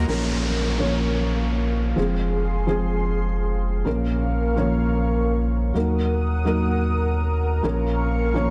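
A straight 4/4 pulse drives this anthemic, emotional EDM passage, where a dark, boxy felt-muted upright piano with audible action noise and dub echo sits up front beside a deep, tube-saturated sub bass, while a lush, warbling unison pad with chorus sustains chords above and an electronic downlifter sounds from 0.1 to 3.9 seconds, in a dense, heavily limited modern master with light reverb and lossy compression artefacts.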